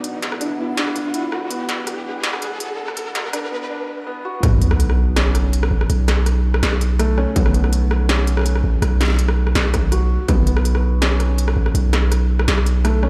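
Tense and heavy, this half-time drum and bass cut at 164 BPM opens on a build-up in Bm, where a very quiet deep, detuned ambient pad and a reversed, dreamy swelling texture sit beneath a soft, felt-muted upright piano playing arpeggios with 12-bit sampler grit and delay, an overdriven industrial kit of clanging snare, crisp hats and rim clicks, and a rising effect, before a brief break gives way at 4.4 seconds to a drop on Bsus2 with an impact, a long, up-front sine 808 bass and a distorted electronic kick, all heard in a large, reverberant room.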